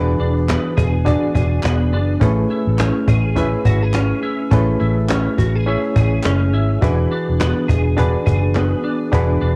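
A dry, close-sounding home cassette recording carries this laid-back, nostalgic snippet of indie bedroom pop in A major, moving at 104 BPM with a lazy sixteenth-note swing over chords of E7, Amaj7 and back to E7. A reedy electric piano with fast tremolo shares the accompaniment with a bright, twangy twelve-string electric guitar that sits up front, thickened by ensemble chorus and vibrato. Beneath them a round, foam-muted vintage bass with tube saturation sits punchy and dark, while a snappy cajon played with soft hands enters at 0.2 seconds and hollow group handclaps linger in the background from 0.5 seconds.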